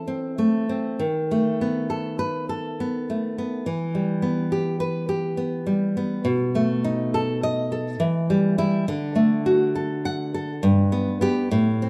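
Wistful and melancholic, this short cut from a longer romantic piece features a solo nylon-string guitar, fingerpicked in a classical style and played freely with rubato in 3/4. The bright, up-front guitar moves from Am/E through B7 to Em before turning toward D and G. A moderate recital-hall reverb surrounds the playing, and lossy compression artefacts colour the sound across its 11.9 seconds.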